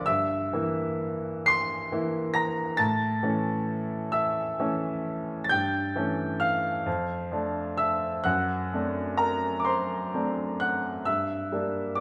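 A clear baby grand piano carries this melancholic, yearning romantic nocturne in D minor, played alone from 0.0 to 12.0 seconds in a slow, rubato 12/8 at 42-46 BPM in dotted quarters. The instrument sits up front with an open tone and long sustain, ranging from F2 to C7 as the harmony moves from Edim/G through A and A7/G to Dm/F, then D7/F# before landing on Gm at 11.1 seconds. A moderate recital hall reverb surrounds the playing in this passage, which is cut from a longer piece.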